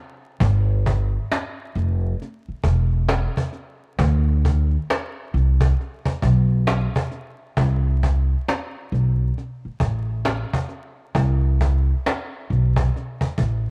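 Worn, warbling cassette-tape sound with vinyl crackle, pitch drift and studio reverb frames this nostalgic, melancholic lo-fi hip hop fragment, cut from a longer piece and set to a swung groove. From 0.4 seconds an up-front pizzicato upright bass, dark and growly with steel strings, moves low in its register beside a woody, compressed and saturated cajon with faint snares that also sits close. A second section begins at 7.6 seconds, carrying the same intimate acoustic pairing.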